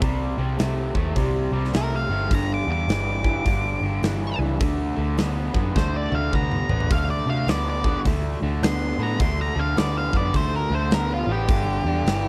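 Blues rock and southern rock power trio at 105 BPM in a swung 4/4, driving and swaggering, with a bright, double-tracked overdriven garage guitar riff up front over round, foam-muted picked bass and a huge acoustic arena kit with a punchy kick and pumping hall room, while a dark octave-fuzz lead guitar with slapback echo solos from 1.8 s and the drums break into a fill at 5.8 s, over C5, G5 and D5 chords in a small room ambience.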